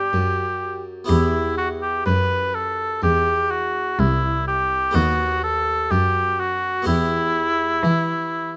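A classical, baroque-style sonata movement with continuo, this short excerpt cut from a longer piece moves in a straight 4/4 with a dance-like, radiant character. The oboe carries the melody up front as soloist, its tone warm with a light vibrato in classical style, singing in the range from E4 to B4. Beneath it, a single bowed cello holds the bass line with a rich, gut-string, period-style tone that is close and reedy. The harpsichord supplies the accompaniment in an airy, plucked Flemish-style voice, full-bodied with two sets of strings, sitting lower in the balance than the other two. The harmony passes from G to E minor, leans on B7 over D# at 5.0 seconds, and settles back on E minor at 6.9 seconds, all captured with close, detailed microphones and a light reverb.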